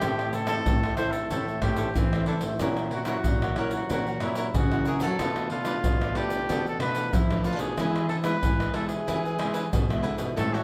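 A straight samba-and-choro groove of egg shaker, pandeiro, tamborim and deep surdo carries this playful, festive excerpt from a longer piece, where a soft-attacked, jazz-style trumpet sings the melody with light vibrato over crisp, bright cavaquinho picking and two fingerpicked classical nylon-string guitars, one on bass and one adding warm accompaniment with audible finger squeak, all moving from Am through F#7/A# and Bm7b5 to E in a wet studio reverb heard from further back in the room.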